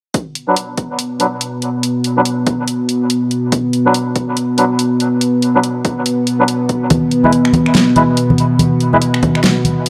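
Cavernous and heavy, this deep dubstep excerpt rides a half-time, swung feel built on a punchy, overdriven electronic kick and a layered deep house kit of finger snaps, hi-hat and a fat, up-front snare. A tense, string-like bowed drone with slow attack, vibrato and its own reverb sustains chords beneath reedy, nasal melodica stabs that are darkened by a low-pass filter and trailed by dub echo. Bright, low-tuned congas join close at 6.9 seconds, all within a dark production and a moderate echo-chamber reverb.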